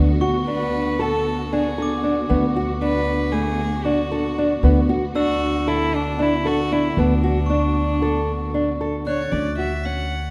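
A short excerpt of playful, restless contemporary chamber music opens at once with a small, fingerpicked nylon-string guitar playing arpeggios up front, a woody pizzicato upright bass holding a low D, and a lush studio string section sustaining chords in the background. The piece moves in an uneven 9/8 metre with a straight feel, resting on a D6 harmony before reaching Dmaj7 at 9.3 seconds, where the string section stops. From 0.2 seconds a bright glockenspiel struck with hard plastic mallets adds a sparkling, bell-like texture high above, close-miked and dry yet set behind the other parts. From 0.5 seconds a single violin carries the melody, played sul tasto with an airy bow and soft attack, so its pure tone seems to float close to the listener. The string ensemble's vibrato and portamento lend an expressive sheen from a distance, and a recital hall reverb wraps the dark, warm production.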